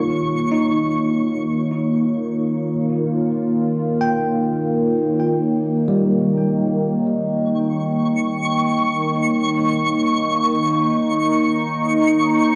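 A detuned sawtooth analog pad sits up front with smooth, chorused sustained chords under a filter sweep in this warm, weightless, free-time ambient excerpt in Eb mixolydian, joined by a bright, bell-like tine electric piano playing clean arpeggios through tape echo as it fades out, a resonant, wave-folded drone on Eb3 with phaser and plate reverb that enters at 2.0 s, and a sparkling granular FM texture with octave-up shimmer that glints for an instant at the start and returns at 8.0 s, with every part colored by cassette tape and set in a wet studio reverb.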